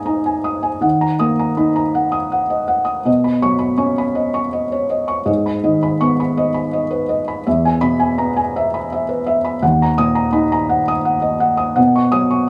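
A small, intimate room with light reverb frames a felt-muted upright piano placed up front, its thick felt giving each note a soft, mellow tone across a range from D#2 to D#6. This neoclassical minimalist solo moves freely in rubato 6/8 at about 55 BPM in dotted quarters, with a hopeful, tender mood. The harmony drifts from G#sus2 through D#m, Badd9, G#m and E before returning to D#m and Badd9 by 11.8 seconds, as this short excerpt from a longer piece closes at 12.5 seconds.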